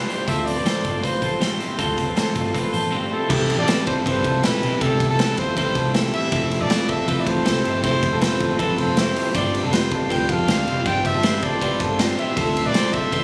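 This bright, nostalgic slice of jangly indie pop at 159 BPM opens with a close-miked trumpet carrying the melody with light vibrato. Beneath it play a compressed, slightly broken-up electric guitar, a lo-fi, twangy guitar picking arpeggios in the background, a round, foam-muted bass and a gritty, punchy garage drum kit that sits up front in a pumping stone room. At 3.3 seconds a dark, woody upright piano with audible action noise joins in the background alongside a barely audible, lush string section, as the harmony moves through G7sus4, Fmaj7 and Dm7 with the small-room feel of a phone recording dressed in studio reverb and compression.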